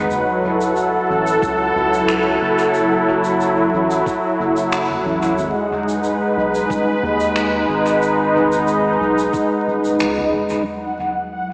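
Hazy and meditative, this short ambient dub passage, cut from a longer piece, drifts on a loping 4/4 with a light swing. A smooth, detuned analog pad sits up front, holding sustained chords with a soft attack and a chorus shimmer, moving from F#m7 to G#m7 at 5.4 seconds before returning to F#m7. Beneath it, a deep, round sub bass hums softly, while a soft-mallet kit of finger snaps, shaker and toms, recorded in a big room, trails dub echoes, and a muffled, thumpy, pitched-down kick pulses in the background. Near the close, at 10.7 seconds, a bubbling, resonant stepped-filter texture surfaces up front with chorus and its own reverb. The whole mix is soaked in a lush hall reverb, with vinyl crackle and a small-speaker tone lending it a dreamy, worn patina.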